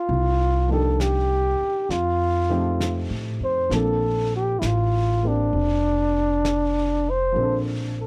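Jazz ballad in Bb major at a slow 66 BPM with a late-night, romantic mood, where a breathy, close-miked flugelhorn with vibrato carries the melody up front over intimate baby grand piano with audible action noise, woody pizzicato upright bass on steel strings, and a dark, smooth brushed drum kit with a rolled-off top, moving through Cm11, F7 and Bbmaj9 in a dry, close 1970s-style small-room studio sound.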